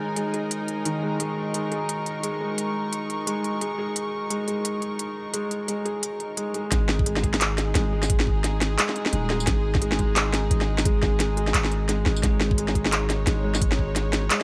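Reedy, gut-string section chords with sidechain pumping and a felt-muted upright piano's mellow arpeggios through dub echo open this cinematic, spacious half-time drum and bass piece over an eerie metallic drone in the background, joined almost at once by an up-front drum kit with woody snare, crisp hats, handclaps and tambourine, until the drop at 6.7 s, where the drone stops and a deep sine 808 bass and a knocking electronic kick enter.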